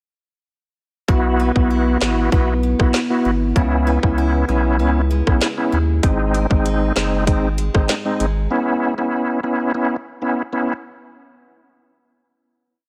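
A reedy, lightly overdriven tonewheel organ with key click and fast rotary swirl plays syncopated chords up front in this hypnotic, tough dancehall piece in C# minor at 97 BPM, over a thick, saturated sub bass with slides, a tight, gritty electronic kit whose syncopated kick is answered by a woody snare layered with claps, and a boxy fingerpicked steel-string guitar rolling through tape echo until about 9.1 seconds, all in a dry room.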